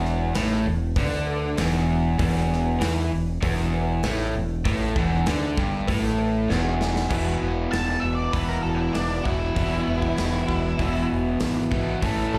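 A straight 4/4 classic rock groove at 98 BPM drives this confident, sunny excerpt, anchored by a gated 80s drum kit with a tight kick, a medium-tuned snare, bright cymbals and a hi-hat in an airy stone-room sound, plus a drum fill at 6.5 seconds. A growling fingered electric bass sits up front with a round, punchy, overdriven tone, while a compressed overdriven electric guitar and a dark, raw garage guitar in the background play the riff over an Emadd11 chord. A metallic, vintage cowbell with slapback echo sits low in the first section. At 7.1 seconds the harmony moves to Esus2 and a woody, boxy steel-string acoustic guitar with old strings enters in the background, followed at 7.7 seconds by a warm octave-fuzz lead guitar soloing high with analog delay. The whole performance comes across as a live gig heard through the venue's PA, with light reverb, studio ambience and club reverb.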